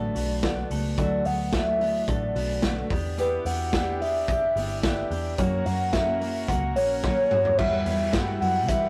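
Jangly indie pop at 109 BPM, wistful and restless, this short cut from a longer piece is led by a hollow, woody synth lead with chorus and vibrato carrying the melody over a full-bodied jumbo acoustic guitar, dark clean electric guitar arpeggios and a round, foam-muted vintage bass. A gritty garage drum kit with a punchy kick sits up front in a pumping small room, with a fill at 7.0 seconds, while a buzzy combo organ joins in the background at 3.2 seconds and a barely audible group handclap appears at 8.1 seconds. The rough rehearsal-room sound carries warm saturation and light reverb as the chords move from D6 through Em7 and F# to Emadd9.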